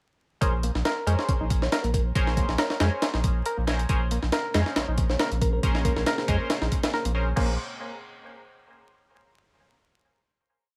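This swaggering, energetic breakbeat track drives at 138 BPM in Bb minor with a light swing on the 16ths, riding a single Bbm9 drop. An up-front, compressed and pitched-up sampler kit loops an edited breakbeat with a thumpy kick, a high-tuned snare, hi-hat and crash, gritty and tape-warm in a small room, while a thick, saturated triangle sub bass pushes a dotted rhythm just as far forward. A clean, reedy electric piano cycles a 16-step sequence through its built-in speakers, colored by harmonic tremolo and digital delay, and nasal, band-passed sawtooth stabs punch out syncopated, close-voiced chords through chorus, phaser and delay. Tucked in the background, a sparkling, bell-like FM electric piano offers short, mellow phrases with a small-speaker tone, and a moody analog pad with a sub octave enters at 4.4 seconds, its slow swells roughened by 12-bit sampler grit and pumping against the sidechain. 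The dry mix sits under a layer of vinyl crackle, and from 7.4 seconds a final chord rings out to close the piece.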